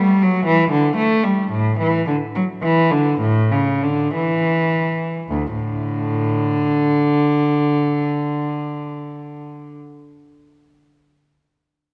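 Flowing and serene, this brief excerpt from a baroque-style suite movement for unaccompanied cello in D major unfolds in a rubato 12/8 at 50-82 BPM, slowing down over the first 5.3 seconds, as a single bowed cello with a rich, reedy gut-string period tone sits up front in its low register within a moderate concert hall reverb, all heard through the warbling pitch drift of worn old cassette tape.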